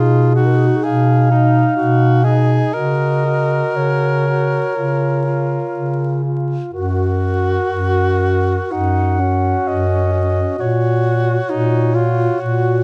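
Lyrical and warm, this short classical excerpt for single-reed quartet unfolds in F# major at an unhurried 58-68 BPM in 4/4, its pulse bending freely with rubato. A dark, smooth-topped clarinet carries the melody between F#4 and F#5, while a clear alto saxophone shapes a close second line just beneath it. The warm tenor saxophone fills in the accompaniment with a vibrato-touched tone, and a mellow bass clarinet anchors the low end, sitting up front in the balance. All four voices play together from the start to 12.8 seconds, moving through chords that settle from G#m/B toward F# and close on F#/A#. Close, detailed microphones capture the players within a moderate recital hall reverb, and a vinyl crackle lends the sound an aged patina.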